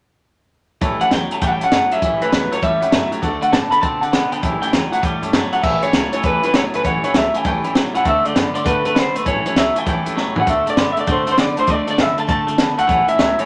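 Rollicking and upbeat, this swung rockabilly excerpt at 199 BPM in A mixolydian puts a twangy, slightly broken-up, lo-fi lead guitar up front over a clean, scooped electric riff guitar with spring reverb, a cocktail drum kit with a punchy kick and high-tuned snare that throws in a fill at 10.2 seconds, a thumpy gut-string upright bass in the background, and a very quiet fresh-stringed dreadnought acoustic guitar and brilliant, slightly detuned upright piano, moving between A7, D7 and Dm7 in a wet studio ambience.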